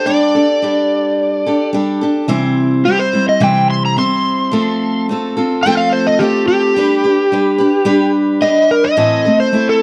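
Warm and jangly, this straight 4/4 rock passage in C major at 108 BPM sets an up-front picked steel-string acoustic guitar beneath a dark, overdriven electric slide guitar that carries the melody and launches into a solo at 2.3 s, moving through Gsus2, C, F, G and Am inside a moderate large-studio reverb.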